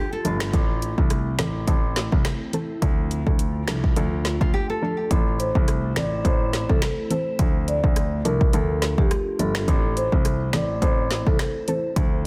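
A glassy, ethereal FM pad with chorus, phaser and sidechain pumping holds sustained chords in the background while a fingerpicked nylon-string guitar adds brief delayed arpeggios, opening this bouncy, sultry dancehall excerpt at 105 BPM with a light swing over Dm and Am. Almost at once an overdriven afro-pop kit sits up front, with deep kick, woody snare, hi-hat, rim click and finger snaps, beside a dark, mellow grand piano carrying the bass, while a soft, round filtered pluck pumps quietly behind them. At 5.4 s a close-miked, dry marimba with medium mallets takes the melody through delay, all within a dense, heavily limited modern master.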